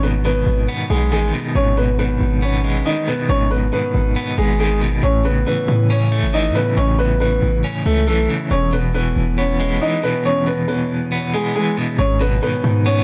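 Wrapped in a small-room ambience, this cold, dark half-time drill excerpt sets a mellow, boxy grand piano melody with long sustain and delay against a slightly broken-up electric guitar treated with tremolo, both riding on a punchy, heavy 808-style bass whose sine tone carries a noise layer, a fast attack and a decaying body.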